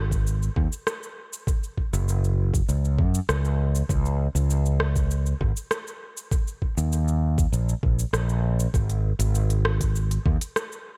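Sunset chillout at 99 BPM in a straight 4/4, relaxed and warm, cut from a longer piece and running about 11 seconds. A fretless electric bass carries the low end from the first moment, sitting up front with a direct, punchy tone between F#1 and F#2. An electronic kick drum enters at 0.1 seconds, knocking and tape-warm, placed forward in the mix with a small room ambience around it. A smooth R&B drum kit joins at the same time, adding hi-hat, rim click and shaker at a lower level, its hats smooth and tape-warm and its sound dressed in dub echo and small room ambience. The whole mix floats in a digital, echo-heavy space, giving the groove a relaxed, warm glow.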